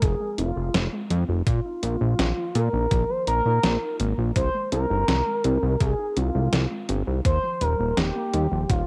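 Lightly reverberant and softened by cassette tape, this short home-recorded passage from a longer synthwave piece has a nostalgic, cinematic mood at a straight, unhurried 83 BPM in 4/4. Up front, a smooth, nasal synth lead of sawtooth and triangle waves carries the melody between F4 and C5, its sustained tones coloured by chorus, vibrato and cassette tape. Beneath it, a fat, thick analog bass built from detuned, saturated sawtooth waves evolves across Eb1 to Bb2, with a filter pluck on its fast attack. Further back, a warbling, dusty pluck of square and sawtooth waves with a noise layer and filter sweep plays mellow, decaying arpeggios through ensemble chorus and analog delay. An overdriven, thumpy electronic kick and a detuned 8-bit drum machine, with hi-hat and a medium-tuned snare, sound as if re-recorded in a small room, and all five parts play together throughout the clip over chords moving from Fm to Bbsus4, Ab and Ebadd9.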